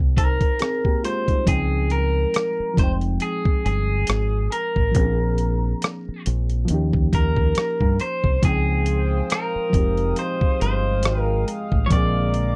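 A twangy, slightly broken-up electric guitar carries the melody over a gritty, sampler-style soul kit with a thumpy kick, a round, dark fingered bass and a reedy, worn electric piano with light overdrive, in this sultry, soulful neo-soul excerpt at 69 BPM in F minor with a 16th-note swing, where a shimmering chorused pulse-width pad joins at 8.4 seconds in a dry, close 1970s-style sound.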